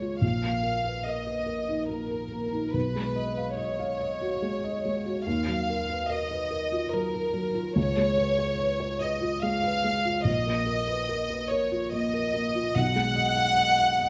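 Fragile and reflective, this neoclassical piano and strings excerpt moves in a rubato 3/4 at 72 BPM, cut from a longer piece and tuned slightly above standard pitch. A chamber violin section carries the melody throughout, its sul tasto bowing, light vibrato and soft attack giving a warm, intimate tone, while a felt-muted upright piano accompanies from deep bass to the upper middle register with a dark, mellow sound and audible action noise. Both parts sit up front in a moderate recital hall reverb, with chords such as Bbsus4, Ebmadd9 and Db7 shading the harmony.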